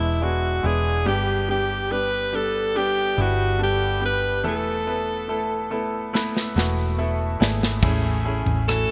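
A bright, forceful alto saxophone with jazz-style vibrato carries the melody in this melancholic, longing 71 BPM pop ballad excerpt, over a brilliant, up-front concert grand piano and a dark, round hollow-body electric bass, while a polished acoustic drum kit with bright cymbals and a tight kick enters at 6.2 s alongside a piano fill, all set in a lush hall reverb with a bright 1980s-style digital sheen.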